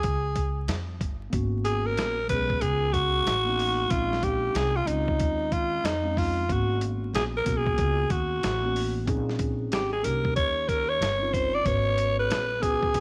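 A growling, breathy alto saxophone opens this cool, smoky jazz-hop excerpt over woody pizzicato upright bass and a gritty, compressed sampler-style drum kit with a thumpy kick, all swung and set against vinyl crackle and light studio reverb. At 1.3 seconds a mellow, clean tine electric piano slips in beneath with minor eleventh chords as the close-miked saxophone takes its solo. The saxophone sits up front, raspy and subtoned, with scooped notes and light vibrato.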